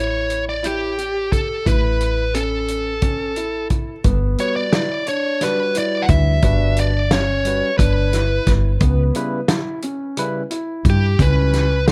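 Progressive instrumental band music in 7/8 at 176 BPM (eighths), bright and driving in G lydian, moving from A7 to Gmaj7 and then C#m7b5. A smooth, overdriven lead guitar carries the melody up front with plate reverb and analog delay, over mellow arpeggios from a dark baby grand piano and a woody, round fretless electric bass thickened by lush chorus, while a soul drum kit with a tight kick and rolled-off top joins at 0.3 seconds. A barky, clean tine electric piano adds accompaniment from 4.4 seconds in this cut from a longer piece, all set in a light reverb.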